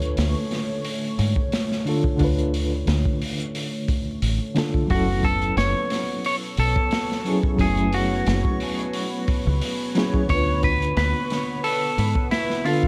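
Brooding and cinematic, this trip hop excerpt moves at 89 BPM in 4/4 with a light swing on the 16ths, its crunchy, gritty breakbeat kit sitting up front over a round, foam-muted dub bass and a reedy electric piano pulsing with fast tremolo and tape echo, while a detuned sawtooth pad with chorus holds dark chords from Dm6 to F#m7. At 4.9 seconds a clean, picked electric guitar takes the melody with vibrato and tape echo, and from 6.5 seconds a reversed, granular swelling texture glimmers faintly in the background. Vinyl crackle and small room ambience wrap the whole piece in a dusty haze.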